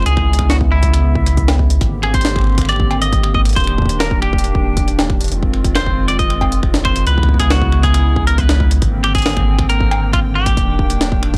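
A clean, picked semi-hollow electric guitar carries the melody through analog delay in this eerie, cerebral IDM excerpt, drifting over a hollow, flute-like pad with chorus moving through chords such as Dbm7 and Abmaj9#11, a round sine sub bass, a heavy electronic kick from 0.2 s, and a pitched-up, gritty jungle sampler-style kit of snare, hi-hat, cowbell and finger snaps, set in a dry digital ambience with a hardware-recorded edge.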